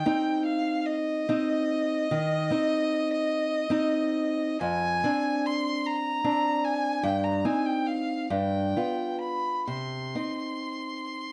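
In a slow, rubato 12/8 at 42-52 BPM, this solemn, yearning romantic duo in C minor pairs a smooth, even bowed violin melody with vibrato, set up front with a slapback echo and reaching as high as C6, over fingerpicked nylon-string guitar accompaniment that sounds small and warm, moving from Cm through Dm7b5/F and G7 back to Cm in a dark, softly reverberant 11.3-second excerpt.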